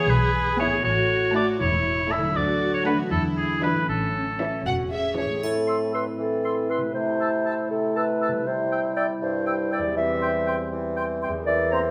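Magical and mischievous, this whimsical film cue moves at 80 BPM in a straight 6/8, opening in A major as a soft-attack, sul tasto string section carries the floating melody on violins over darker violins and violas, a warm cello section and a dark double bass section, with a clear, up-front oboe line and ringing, thumb-plucked harp arpeggios running throughout. At 5.4 s the music turns to A minor as the strings fall away: a dark solo clarinet, already in since 4.7 s, joins the oboe, while a punchy, distant bassoon, mellow French horn chords and a brief triangle take over, with airy flutes in the background entering at 5.7 s. The moderate recital hall reverb gives the fragment, cut from a longer piece, a gently roomy glow.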